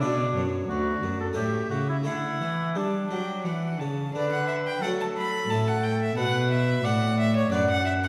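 A baroque-style sonata movement in D major opens with violin, oboe, harpsichord and cello together, moving in a flowing, dance-like 3/4 at 89 BPM with a gently rubato feel, tuned to A4 = 442 Hz. The close, bowed violin carries the melody with a reedy gut-string tone, while an up-front oboe with light vibrato sings the second line, an airy, brilliant harpsichord with octave strings supplies plucked accompaniment, and a rich period-style cello anchors the bass. Heard from further back in a reverberant recital hall, the fragment moves through Bm, A and D before a new section at 4.1 s returns through A to Bm.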